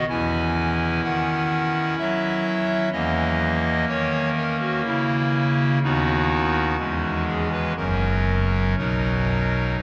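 A slow, rubato 3/4 at around 62 BPM gives this classical chorale-style passage a serene, reverent sway, heard as a short 9.8-second section cut from a longer piece. A solo pipe organ plays throughout on a clarinet reed stop with a hollow tone and romantic voicing, sitting up front and spanning F#1 to G#5 as it moves from C#m/E through C#m69/E and B/D# before closing on F# and B. A deep cathedral reverb with a 6.9-second decay lets each chord hang and bloom in the space.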